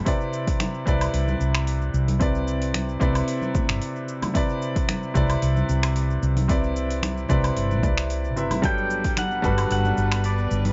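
An intimate, up-front grand piano with audible action noise and tape echo opens on a Cmaj7 chord as an overdriven electronic kick and a deep house kit of finger snaps, metallic hi-hat, shaker and woodblock set a straight, relaxed 4/4 groove for this smooth sunset chillout piece. Bright, soft-handed congas join in the background, along with a dark, round fretless electric bass with tube saturation and subtle chorus. Then a reedy, gut-toned string section, heard briefly at the start, returns at 8.6 s as the harmony shifts to Gmaj7, and a clean pedal steel guitar played with fingerpicks adds a tape-echoed slide melody with volume swells from 8.7 s, over a dry, gritty room sound.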